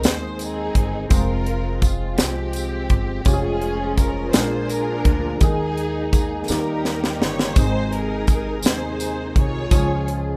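Soulful and hopeful, this slow gospel passage in Ab major sways in 6/8 at 56 BPM, with a lush, distant bowed string section carrying the melody over a worn, long-sustaining baby grand piano and a fat, clean tonewheel organ whose key click and slow rotary speaker sit in the background. Pizzicato upright bass adds a woody low end, a jingly tambourine shimmers lightly, and the airy, polished drum kit sits up front with a punchy kick and a high-tuned snare, breaking into a fill from 6.5 to 7.6 seconds. The rough home demo mix carries light reverb as the chords move from Ab through Fm and Bb7 to a suspended Eb, resolving home to Ab before turning to Db.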